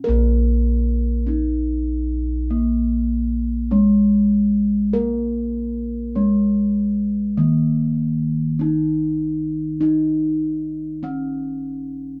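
Javanese gamelan with a shimmering, ceremonial mood, this short excerpt cut from a longer piece sets a mellow bronze metallophone, struck with padded disc mallets and sounding dark, smooth and ringing up front, over round, beating bossed gongs that carry the bass with padded beaters throughout its 12.2 seconds, all heard as a live ensemble in one room with moderate studio reverb.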